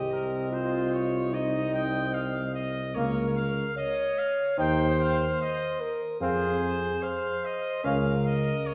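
A clear, distant trumpet carries the melody of this triumphant, noble classical brass quintet excerpt at 74 BPM in 4/4, alongside a mellow flugelhorn second line with light vibrato set in the background, a roomy French horn accompaniment, a smooth-topped trombone, and an up-front tuba bass, all heard from further back in a scoring stage's 1.8-second reverb as the chords move from Cmadd11 through Bbm/Db, Eb and Fm before the cut at 8.7 seconds.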